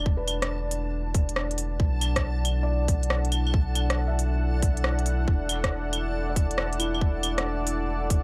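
Light reverb and tape-warm, small-room drums frame this melancholic, rainy future garage excerpt at 138 BPM with a swung 16th feel, where a thick-felt upright piano murmurs in the background with 12-bit sampler grit and tape echo, a detuned sawtooth pad with chorus sustains moody chords moving from E5 through B7sus4 to E9sus4, a round sine sub bass sits up front, and a reversed, granular texture shimmers high and faint, while a tight electronic kick enters at 0.1 seconds and a crisp kit of claves, hi-hat and rim click follows at 0.3 seconds, the piano, pad and bass each pumping against the sidechain.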